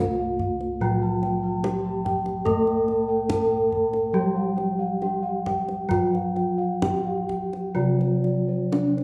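Serene and shimmering, this fragment of a longer Javanese gamelan piece moves at an unhurried pace in a steady four-beat metre, tuned slightly above standard pitch. A bronze metallophone carries the melody, struck with padded disc mallets for a mellow, soft ring, its paired tuning producing the shimmering beats typical of the ensemble. Beneath it, a second metallophone plays accompaniment in a lower register with a horn mallet, giving a brighter, ringing edge that also beats with paired tuning. Bossed gongs trace arpeggios high above with a round, bright bronze tone, while another set of bossed gongs anchors the bass with padded beaters, sounding soft and warm with a boxy, small-room character. The kendang enters at 0.4 s, deep and acoustic, heard close and dry against the ensemble, which plays live together in one room bathed in a generous studio reverb.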